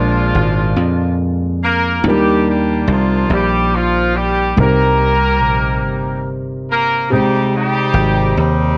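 A small room lends a light reverb to this short cut from a longer piece, with a faint mains hum beneath the music. It is a slow, soulful gospel passage in 6/8 at 47 BPM, counted in dotted quarters with a straight feel, in Eb major and tuned to A4 = 441 Hz. A tight, vintage-flavored horn section carries the melody up front, its clear tone shaded by light vibrato and octave doubling in a pop-style band voicing. Beneath it, a dark concert grand piano supplies mellow accompaniment with a deep low end, while a dry, thumbed electric slap bass sits close and punchy, foam-muted yet bright. All three parts play throughout the 8.8 seconds, moving through Bb7, Ebmaj7, Cm7 and Abmaj7 in a reverent mood.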